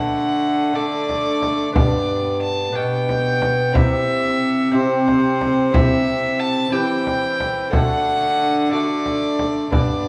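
A nasal, airy-bowed gut-string violin carries the melody up front in this courtly, stately renaissance-style consort dance in 6/8, with a rich, reedy cello on the bass line, a mellow bassoon with light vibrato, and a bright, delicate fingerpicked lute on double strings in the background, while a deep, dry frame drum joins at 1.1 s, all set in a moderate recital-hall reverb across a short excerpt cut from a longer piece.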